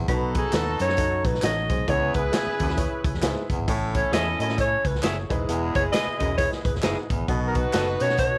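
Danceable and warm, this 1960s-style soul groove swings, led by a breathy, whispered alto saxophone melody in jazz style. Under it sit a subtoned baritone saxophone riff with scooped notes and a dark, foam-muted fingered electric bass. A punchy acoustic drum kit sits up front, while a loose, distant horn section, a worn, slightly detuned upright piano and tambourine with handclaps stay in the background, a bright, picked electric guitar adds stabs from 4.1 s, and a small room ambience carries a faint mains hum.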